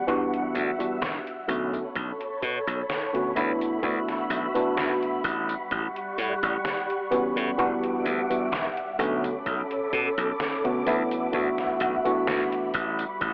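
A telephone-thin cassette sound with a lush hall reverb frames this woozy, faded vaporwave fragment at 64 BPM in D major, where a worn, slightly out-of-tune tine electric piano drifts through chorus and tape echo over Em9, Bm9, D69 and A13 chords until 12.7 seconds, a silky string machine glows with phaser and ensemble chorus, a bright, growly slap bass sits up front, and a detuned 8-bit drum machine's hi-hat, snare and tambourine ride above a thumpy kick buried in the background.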